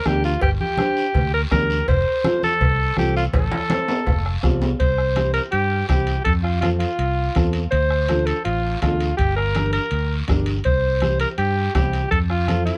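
Fiery and driving, this straight 164 BPM cumbia in G dorian, cut from a longer piece, sets a clear, up-front alto saxophone with analog delay on the melody over thumb-plucked nylon-string guitar, a round, amped fingered electric bass, a close soft-beater bombo, low-tuned congas in the background, a raspy guiro and ringing metal-shell timbales and cowbell, with a drum fill from 3.3 seconds and a guitar fill from 3.7 seconds leading into the second section at 4.8 seconds, all inside a dark production with light reverb.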